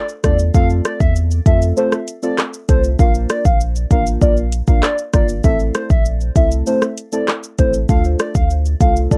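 A straight 98 BPM dancehall groove in 4/4 drives this hypnotic, tough piece in A phrygian, built on an electronic afro-pop kit with a deep kick, metallic hats, handclaps, rim clicks and shaker sitting up front under a cassette-tape grit, while a punchy sine sub bass with a pitch-drop attack holds down the low end. Deep, mellow chord stabs with a vintage warble, chorus and sidechain pumping move through Dm, F, Bb and Am, and a hollow, woody clarinet-like synth lead carries the melody with vibrato, phaser and tape echo. It is a short cut from a longer piece with a dry home-cassette sound.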